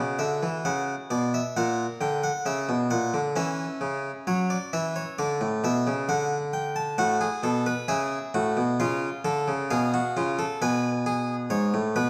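A nasal, thin, brilliant French-style harpsichord sits up front as the only instrument in this solemn yet driving baroque-style three-part fugue, its plucked lines spanning G#2 to A5 inside a moderate scoring-stage reverb and a dark overall production, heard as a 12.1-second passage cut from a longer piece.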